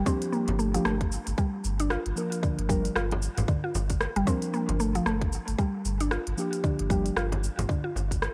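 Light reverb and digital ambience frame this organic downtempo cut from a longer piece in G minor, meditative at 114 BPM with a swung 16th-note feel, resting on a single Gm7 as muted, felt-like synth keys with chorus, sidechain pumping, low-pass filter and tape echo play a dark accompaniment until 7.1 seconds, a woody mallet-like FM pluck with chorus and tape echo spins arpeggios up front, a deep, round sine sub bass pumps on G1, a tight, tape-warm electronic kick sits forward, an organic electronic kit adds crisp hats, cabasa, rim clicks and toms, and a close, dry frame drum stays in the background.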